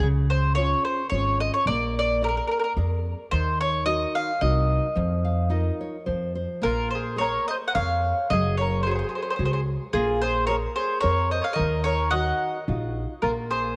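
Bathed in a moderate plate reverb, this lively, romantic Italian folk serenade in Bb minor sways in 3/4 at 109 BPM with a light swing, as a bright, woody double-strung mandolin carries the melody up front over fingerpicked nylon-string guitar of deep classical character and a growly, thumpy pizzicato upright bass, the guitar adding a fill at 5.0 seconds before a mellow, round second mandolin line joins at 6.7 seconds.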